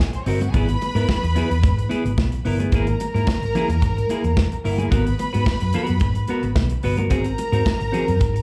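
Driven by a straight 4/4 pulse at 110 BPM, this glamorous, danceable disco clip in G# minor moves through G#7, E, a rootless F#9 over G#, and G#m9 before returning to G#7. A modern studio drum kit sits up front with a tight kick, a medium-tuned snare and hi-hat, while very quiet congas add a bright, damped, thin-skinned sound from the start. A round, punchy hollow-body fingered bass enters at 0.3 seconds, dark and amped, standing forward alongside the drums. A clean, picked semi-hollow guitar supplies warm accompaniment with a slapback echo, and a lush, bowed symphonic string section carries a smooth, even second line with vibrato, also touched by slapback echo. The whole cut sounds like a live club gig heard through the venue's PA, with light club reverb around it, and it is lifted from a longer piece.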